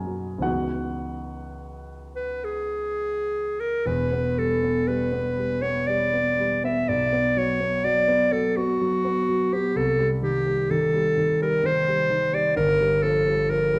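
A clear, close-miked clarinet carries the melody in a classical style, entering at 2.2 seconds and sitting up front as the solo voice in this impressionist classical duo. Beneath it, a dark, mellow concert grand piano provides the accompaniment from the opening moment, its deep bass reaching down to E1 while its upper notes rise to A#5. The piece is in C# minor, tuned to A4 = 442 Hz, and moves in 3/4 at a slow, rubato 51-66 BPM, giving it a hazy, wistful mood. A short opening passage built on C#m11 gives way at 3.9 seconds to a new section whose harmony drifts from E minor through B5 and C minor to a closing Gm9. The duo is heard in a wet recital hall with a 1.4-second reverb, and the passage is cut from a longer piece.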